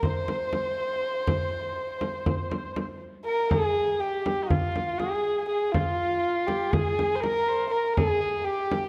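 Hypnotic and longing, this short fragment of a Turkish makam ensemble piece in 9/8 at 242 eighth-note beats per minute sets a dark, nasal, woody kamancheh up front on the bowed melody with vibrato and portamento, a warm, vintage-toned soprano saxophone with soft attacks and scooped notes beneath it on a jazz-inflected second line, and a close, acoustic frame drum played with soft hands, all bathed in the lush reverb of a recital hall as the music moves into a new section at 3.5 seconds.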